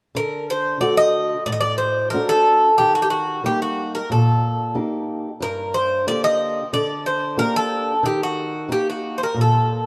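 Heard from further back through a wet plate reverb, this brooding Greek folk excerpt at 91 BPM in D phrygian dominant sets a bright, metallic bouzouki melody with some octave-doubled strings over a dark, boxy fingerpicked ladder-braced acoustic guitar, both up front, as the chords move from D to Eb, Gm and back to Eb.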